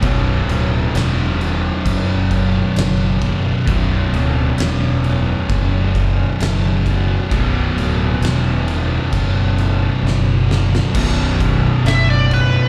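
A live club sound carries this heavy, sludgy stoner and doom metal excerpt, heard through the venue's PA with small-room ambience and club reverb around the band. At 66 BPM in a straight 4/4, a fingered electric bass sits up front from the start, round and overdriven with dark fuzz, moving between B0 and F#1 under a B5 chord. Two thick, picked fuzz guitars play the riff between B1 and B2, one very quiet and the other further back with added distortion, while a raw, double-tracked garage guitar plays the same range with lo-fi overdrive and slapback echo. An oversized, low-tuned acoustic kit pounds out crash, kick and snare in a bright stone room that pumps, with a fat snare, punchy kick and dark cymbals, the whole kit saturated and gritty, and it plays a fill from 10.0 to 10.9 seconds. The solo section opens at 10.9 seconds, and at 11.9 seconds a compressed fuzz lead guitar pushes up front, ranging from B4 to E5 through wah, distortion and slapback echo before the cut at 12.7 seconds.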